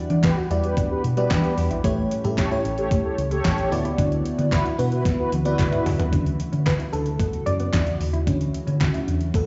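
Heard through a club PA with light reverb and a dulled top end, this excerpt of feel-good, danceable early-eighties boogie funk at 112 BPM in D major rides on a punchy, round hollow-body fingered bass and an up-front, overdriven 8-bit drum machine with thumpy kick and fat snare, under a lush, dreamy FM electric piano with chorus and phaser, a shimmering pulse-width pad, a dark, clean guitar riff in the background, crisp group handclaps and a brassy synth-brass second line that stops at 5.8 seconds, partway through a drum fill from 5.1 seconds that leads into the electric piano's solo at 6.1 seconds.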